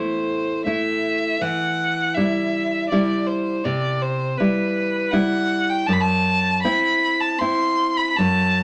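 A romantic duo for violin and classical guitar, this short cut from a longer piece moves in a solemn, yearning triple metre with a free, rubato feel over a progression from Am through Em and Cmaj7 to F#m7b5. A single bowed violin carries the melody, up front with a rich, smooth, even tone and vibrato, while the fingerpicked nylon-string guitar supplies a dark, full-bodied accompaniment, its finger squeaks audible. Both instruments play throughout the 8.6 seconds, set in a wet club reverb.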